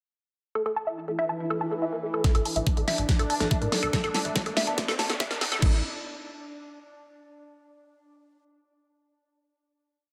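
A straight, four-on-the-floor psychedelic trance pulse drives this short, hypnotic piece, where a woody, wave-folded pluck riff with dub echo opens at 0.6 seconds, soon joined by a bubbling, resonant stepped-filter chord texture, before an overdriven, knocking kick and a big-room kit with a huge snare, hats and crash arrive at 2.2 seconds, followed just after by a tight, galloping sequencer bass, for a filter-swept build with a drum fill and a background riser that resolves into a final chord at 5.6 seconds, all bathed in lush hall reverb.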